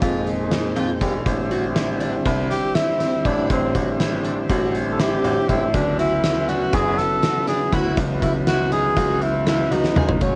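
Pulsing in a straight 9/8 at 241 BPM counted in eighths, this tense, intricate progressive instrumental fragment sets a mellow, classical-style tenor saxophone solo with vibrato up front over a smooth, clean tonewheel organ on a slow rotary speaker that adds a brief fill at 0.5 seconds, shimmering octave-doubled twelve-string acoustic guitar arpeggios in the background, a clear, worn baby grand piano holding down the bass with long sustain, and an oversized, low-tuned drum kit with a fat snare, punchy kick and gritty saturation in a pumping stone room that rolls into a fill at 9.8 seconds, all moving through Fm, Am7, D and C#m with light reverb and the grain of a home cassette recording.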